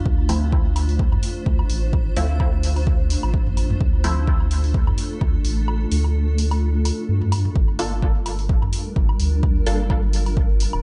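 A cloudy, evolving granular pad opens this deep, hazy dub techno excerpt in D minor, holding blurred, full-bodied chords at 128 BPM with a swung 16th-note feel. A round, soft sub bass with tube saturation arrives almost at once, and both parts breathe with sidechain pumping alongside a punchy analog kick. A small-room hi-hat and tape-warm electronic woodblock and toms fill in the groove, the percussion also pumping and sent into dub echo. A muted, resonant chord stab with a phaser and dub echo plucks through the opening stretch and returns later. The kick drops out from 5.7 to 7.6 seconds, and as it comes back the harmony moves from Dm7 to Gm7. The production is dark and dry, with the pad's own reverb adding the only real space.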